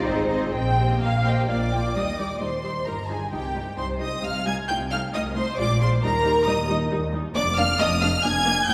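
A quick classical-period movement for string orchestra in E-flat major, this lively, spirited passage moves in 3/4 at 133 BPM with a rubato feel, cut from a longer piece. The first violin section carries the melody up front, its bowed tone smooth and even with vibrato, while a second violin section sits more distant, shaping its line with a soft attack, portamento and expressive phrasing. Beneath them, the viola section supplies a rich accompaniment, and the cello section holds the bass in the background with a smooth top. The double bass section enters at 0.1 seconds, adding a distant, even foundation down in its low register. The harmony passes from A-flat through E-flat and C minor to B-flat seventh chords, and the opening phrase gives way to a new section at 2.0 seconds. A wet concert hall reverb places the listener further back in the room, lending the ensemble a lush, spacious glow.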